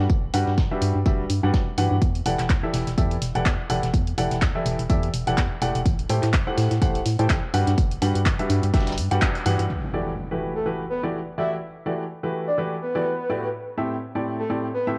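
Bittersweet and energetic, this piano house excerpt at 125 BPM in E minor sets a clear, worn grand piano riff over a hollow, organ-like FM bass, a punchy electronic kick, overdriven analog drum-machine claps and hats, and a gritty, very quiet sampler-style kit, all through a home-recorded cassette ambience with spring reverb, until the drums and bass drop out at 9.7 seconds for an electronic impact and a breathy, flute-like synth lead enters at 10.6 seconds with lush chorus and analog delay.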